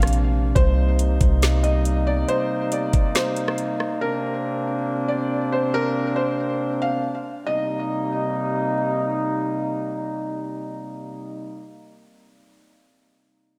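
A warm, classical-style brass ensemble holds sustained chords with a pumping, breathing pulse through to 11.7 seconds, setting a spacious, melancholic tone for this atmospheric cloud-rap excerpt in C minor at 139 BPM with a half-time feel, moving between Bbadd9 and Cm7. A soft, muted upright piano with a thin felt sound and delay carries the melody until 8.7 seconds, while a deep, round 808-style bass drops out at 2.2 seconds and an electronic R&B kit with a knocking kick, woody snare, rim click and metallic hats stops at 3.9 seconds. The dreamy mix is soaked in a long church reverb.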